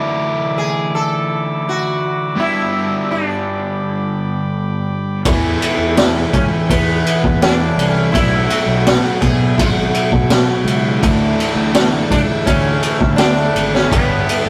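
A buzzy vintage combo organ holding sustained chords in the background, with spring reverb, and a double-tracked, overdriven semi-hollow guitar riff open this hazy, hypnotic psychedelic rock excerpt at 83 BPM. The sitar's shimmering, buzzing melody, alive with sympathetic strings and analog delay, arrives at 0.6 seconds. At 5.3 seconds a growly fuzz bass and a raw garage drum kit with a boomy kick, high-tuned snare and ride cymbal join, all within a rough rehearsal-room sound and a stone room's moderate reverb.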